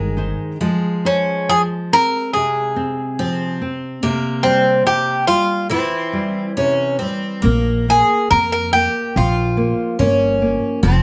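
Uneven, rubato beats in 2/4 shape this longing, passionate fado-style ballad excerpt, where a bright, metallic Greek bouzouki carries the melody up front from 1.1 s over a full-bodied, fingerpicked nylon-string guitar and a shimmering, octave-doubled picked twelve-string acoustic guitar second line, while a woody, growly pizzicato upright bass sounds at the very start and returns at 7.4 s, all set in a small room's moderate reverb.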